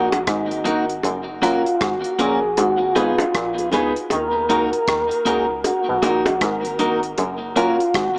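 A laid-back, hypnotic roots reggae groove in Eb minor at 78 BPM opens with an up-front tonewheel organ melody, clear with key click and vibrato, turning through a slow rotary speaker and tape echo, over a clean, compressed electric guitar also carrying tape echo, a stringy muted clav riff through auto-wah, woody upright piano stabs and a deep, round dub sub bass. From 0.1 s a damped 70s kit with a tight, dry kick, hi-hat and rim click joins high-tuned bongos played with hard hands, the bongos dropping out at 7.4 s. Moderate spring reverb and an echo-heavy, small-speaker mix shape this cut from a longer piece as the chords move between Ebm, Gb and Abm.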